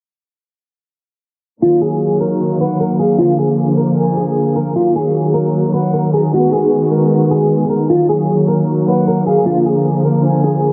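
A half-time 4/4 groove carries this brooding, melancholic hip hop fragment, cut from a longer piece. At 1.6 s a clean, picked electric guitar carries the melody up front, its tone treated with analog chorus, a low-pass filter and a dub echo. Alongside it, a rich symphonic string section holds sustained bowed chords, close and intense with a biting edge and light vibrato. A breathy concert flute enters at 2.6 s as a second line, its straight tone and soft attack sitting in the background behind its own dub echo, and it returns at 8.9 s. The mix is echo-heavy and filtered, with light reverb and a sense of studio ambience.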